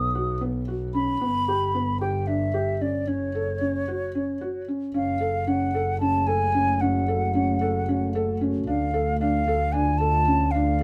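A hollow, pure-toned silver concert flute carries the melody up front in this restless, urgent chamber piece for contemporary ensemble, cut from a longer work and set in 7/8 at 225 BPM counted in eighths with a straight feel. Beneath it, a felt-muted upright piano plays boxy, intimate arpeggios with audible action noise, while a double bass, bowed sul tasto by a single player with an airy tone and light vibrato, holds the low end close to the listener. The harmony moves from B through G to F#5 before a brief break from 4.2 to 5.0 seconds, after which the music settles into F# harmonic minor on an F# minor chord. At 6.2 seconds a deep, moody ambient pad enters in the background with slow-attack sustained chords, its detuned sawtooth and sub-octave layers softened by chorus and built-in reverb. A shift to D minor at 8.7 seconds darkens the close, all within a light reverb that keeps the quartet intimate.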